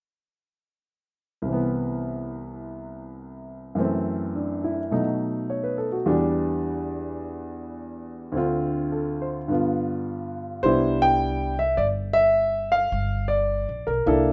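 An intimate grand piano opens at 1.4 s, up front with its action noise audible and a touch of plate reverb, carrying the melody through a playful, sophisticated swung jazz passage that moves from Cmaj7 through F#m7b5, B7 and Em7 to Dm7 and G7. At 10.6 s a woody, thumpy pizzicato upright bass enters beneath the piano as the harmony opens onto Cmaj9 and then Gm. The piece has the rough feel of a home demo in a moderately reverberant room, and this short section is cut from a longer performance.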